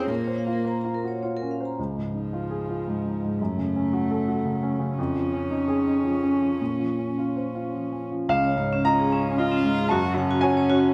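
This neoclassical piano and strings piece feels tender and hopeful, moving in a rubato 3/4 at about 105-115 BPM in D-flat major, tuned slightly low to A4 = 438 Hz. A baby grand piano carries the accompaniment throughout, its open tone and long sustain placed up front. Beside it, a single bowed cello plays a second line with an airy, sul tasto sound, soft attack and light vibrato, heard close and intimate. A vibraphone struck with hard mallets adds metallic, ringing arpeggios with a medium motor vibrato and a slapback echo, appearing at the opening, dropping out at 1.7 seconds and returning at 8.3 seconds. The harmony drifts through Bbmadd9, Dbadd9, Gbm and Dbadd9/F, all held in a moderate recital hall reverb that gives the short passage a warm, gently spacious setting.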